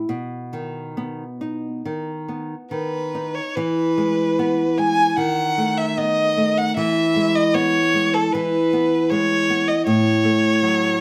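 A rich, focused violin played by a single player, with vibrato and a slapback echo, enters up front at 2.7 seconds, carrying a serene, romantic melody over a small, fingerpicked nylon-string guitar whose accompaniment shows finger squeak, the duo moving in a gentle rubato within a light reverb in this short cut from a longer piece.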